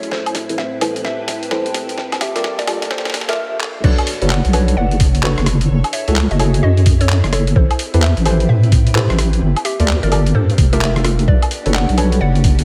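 UK garage in a skippy, moody two-step groove at 129 BPM, this excerpt opens with a build-up as a gritty, pitched-down sampler-style kit of snare, hi-hat, rim clicks, handclaps, woodblock and crash plays a fill, a deep, nasal chord stab with tape echo carries a filter sweep, and a nostalgic, warbling tape-like pad drifts in the background until 3.4 seconds. A hollow, bouncy square pluck sings the melody through a diffuse ambient delay over a silky string machine that pumps under phaser and ensemble chorus, with the chords moving through minor ninths. At the drop at 3.8 seconds, a thumpy, compressed kick and an up-front, saturated wobble bass arrive to anchor the low end.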